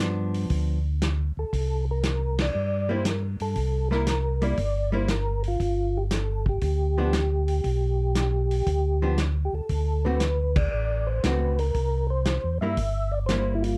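This is a greasy, soulful soul jazz organ trio excerpt with a swung feel. A tonewheel organ carries the bass line in a round, dark voice, lightly overdriven and colored by chorus vibrato and a slow rotary speaker. A second organ enters with the melody at 1.4 seconds, its soft, flute-like tone marked by a percussive second-harmonic attack and the same chorus vibrato and slow rotary shimmer. A clean, compressed hollow-body electric archtop guitar comps with a picked accompaniment. Alongside it, a tight, mid-forward acoustic kit of medium-tuned snare, punchy kick, hi-hat and ride cymbal sits up front with a rolled-off top. The whole band hits accents at 2.3 and 10.5 seconds over a progression moving through G7, C7, G, D7 and back to C7, all set in light reverb with a dark, warm production.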